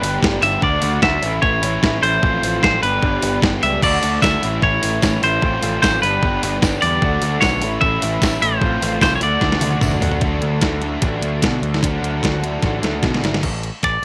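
A straight 4/4 pulse from a detuned 8-bit digital drum machine, with a thumpy kick and a tape-tinged, roomy sound, drives this carefree, upbeat indie rock excerpt, as a twangy, compressed clean electric guitar carries the melody with slapback echo over riffs from a scooped electric guitar with analog chorus and a hollow-body semi-hollow guitar, both overdriven, while a growling picked bass with overdrive sits underneath, a jingly tambourine joins from 4.2 to 9.9 seconds, and a drum fill leads to an Asus4 chord at 13.4 seconds.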